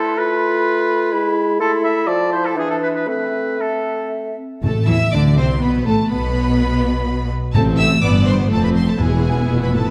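Urgent and restless, this quick classical-period movement for symphony orchestra in 3/4 moves with a pliant rubato and is cut from a longer piece. It opens with the woodwinds alone: a bright, close-miked clarinet, a pure, hollow silver concert flute high above, and a distant, roomy oboe share second lines over a mellow, up-front bassoon. At 4.6 seconds the strings take over, as a rich violin section carries the melody with vibrato while a second violin line and a smooth, close viola section fill in the middle. Underneath, a warm cello section with expressive portamento joins a clear, intense double bass section on the bass, and timpani played with medium mallets sit in the background, returning at 7.5 seconds. A wet concert hall reverb surrounds the orchestra with a spacious sound.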